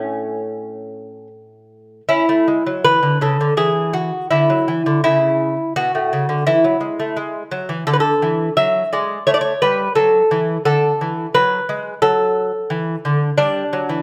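Rubato and unhurried, drifting around 75-90 BPM in 4/4, this radiant, serene baroque-style dance is played by a solo lute in A major, a short passage cut from a longer piece. The lute sits up front, fingerpicked on gut double strings with some octave-doubled courses, giving a delicate, warm tone that spans A2 to E5. After a brief opening phrase, a new section begins at 2.1 seconds, moving between A and D harmonies with colour from a Dadd9 and ending on G5 at 13.4 seconds, all carried by the moderate reverb of a recital hall.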